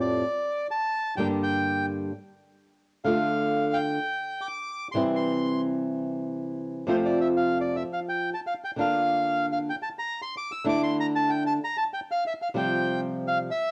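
Tango at 127 BPM in 4/4 with a rubato feel, dramatic and passionate, where a reedy, boxy bandoneon carries the melody high up front while a dark, fingerpicked flamenco guitar with plate reverb accompanies below, both heard through the grain of a home cassette recording in a short, wet studio reverb as the chords move from Gm and Dm through C, F and Bb/D to Dsus2 and Csus4 across this 13.7-second cut from a longer piece.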